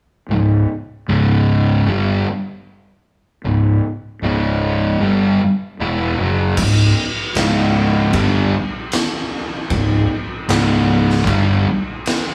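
Stoner and doom metal with a heavy, hypnotic pull, where a dark, double-tracked fuzz guitar riff sits up front over a growly overdriven fingered bass in a stone-walled room, and then an oversized low-tuned drum kit crashes in at 6.6 seconds with a fat snare, punchy kick and dark cymbals pumping the room as the chord shifts from C# minor to a bare C#5.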